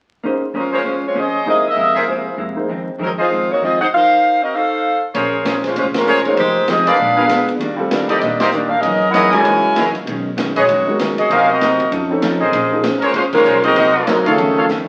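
A swinging 4/4 pulse at 195 BPM drives this sultry big band excerpt in Bb minor, where a dark, compressed hollow-body electric guitar and a natural-sounding baby grand piano comp under a clear, tight saxophone section carrying the melody up front, while a bright trumpet section punches in with stabs and a woody pizzicato upright bass thumps in the background. The airy, polished drum kit enters at 5.1 seconds with a punchy kick as the band hits accents across the second half, and a mellow, distant trombone section slips in briefly just before a drum fill at 14.7 seconds. Everything sits in a wet studio reverb and carries the crackle of a very old 78 rpm record.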